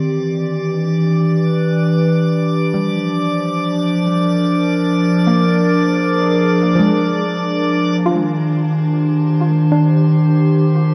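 A warbly, tape-like pad sits up front with dark, nostalgic sustained chords, while a glassy texture of drifting overtones fades in above it through the first 8.0 seconds, setting a reflective, spacious ambient mood in free time. At 2.7 seconds a soft, round pluck enters in the background with gentle arpeggios, trailed by delay and shimmer reverb. The whole dreamy, lo-fi passage is cut from a longer piece and soaked in a long plate reverb with cassette colour, settling onto a new chord at 8.0 seconds.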